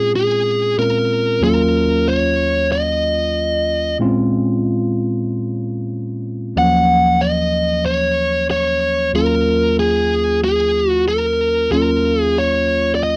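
A lightly swung 4/4 groove at 93 BPM carries this mournful, smoky blues passage, cut from a longer piece and tuned to A4 = 436 Hz, where a biting, overdriven lead guitar sings the melody up front over a bright tine electric piano shimmering with lush chorus as the harmony moves between Bbm7 and Ebm7, all captured with a dry, close 1970s-style studio sound and light reverb.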